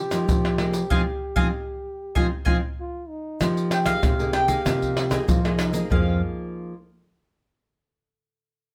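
A straight 4/4 samba and choro groove at 96 BPM drives this short cut from a longer piece in F minor, its mood both yearning and lively. Egg shaker, pandeiro, tamborim and a tight surdo sit up front with soft hands and a compressed, saturated edge, while a thumb-plucked nylon-string guitar carries the bass with a dark, full-bodied tone and audible finger squeak. Over them a bright, woody mandolin picks the melody on double strings, joined by a warm trombone second line in a jazz style with vibrato and scooped notes, and a small, fingerpicked nylon-string guitar fills in the accompaniment, ringing on alone until 6.7 seconds after the other parts fall away. The harmony moves from F9sus4 to Fm11 at 3.4 seconds and Fm7 at 5.9 seconds, with a band accent from 0.9 to 3.4 seconds and a drum fill from 2.9 to 3.4 seconds. Light reverb gives the ensemble a modest sense of space.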